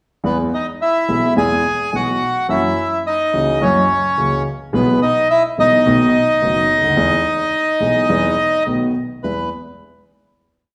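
Elegant and playful, this short tango in E major moves at a rubato 107 BPM, with a reedy, bright bandoneon carrying a motif-based melody in period phrases, partly doubled in octaves, over a concert grand piano whose milonga rhythm, deep bass and audible action noise sound intimate and close, both captured live in one room with a wet large-studio reverb before the piece settles on a final E chord at 9.2 seconds.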